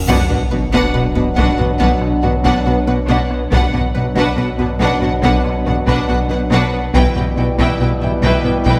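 A straight 4/4 pulse from a very quiet taiko ensemble on heavy sticks drives this tense, futuristic hybrid orchestral and electronic film cue, where a huge, bright cymbal swell and sub drop mark an impact until 3.5 seconds while a moody analog pad, deep sub bass with octave, fat analog bass riff and twangy string-like resonator-pluck arpeggios blend with a lush violin section melody, a second violin line in the background, distant violas, mellow French horn and trombone sections, and expressive cello and double bass sections, set in a moderate scoring-stage reverb as the harmony shifts at 6.9 seconds.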